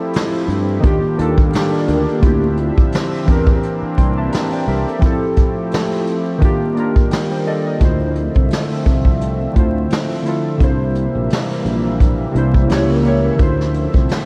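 A vintage brush drum kit sits up front in this hazy, melancholic lo-fi hip hop piece, its medium-tuned snare, tight kick and hi-hat carrying a rolled-off top and a gritty 12-bit sampler texture while still sounding roomy and distant. The groove moves at 86 BPM in 4/4 with a gentle swing in D minor. Warbly synth keys, detuned square and sawtooth tones with a filter sweep and chorus, play nostalgic accompaniment and take a short fill at 6.8 s, while a smooth, airy analog pad with a slow attack holds sustained chords beneath them. A direct, growly fretless electric bass anchors the low end, and a dark vibraphone with soft mallets and fast motor vibrato rings briefly in the background through delay, first at 1.7 s and again at 12.5 s. The harmony drifts through Fmaj9, Ebmaj7, Dm11 and C9 before a second section leans on Dm9, C7 and a C#dim7 turn, all wrapped in light small-room reverb and vinyl crackle in this section cut from a longer piece.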